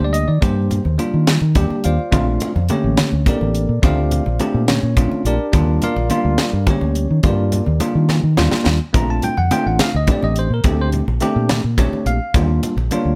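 A straight 6/8 pulse at 70 BPM drives this bright, slick electric jazz fusion excerpt in Bb major, with a tight funk drum kit, dry and up front with a high-tuned snare, sharing the groove with hard-handed, damped congas sitting in the background. A round, punchy fingered electric bass and a clean, bell-like tine electric piano carry the harmony, moving between Ebmaj9 and Bbmaj9 chords under light reverb. A drum fill arrives at 8.1 seconds before the Bbmaj9 returns at 8.9 seconds.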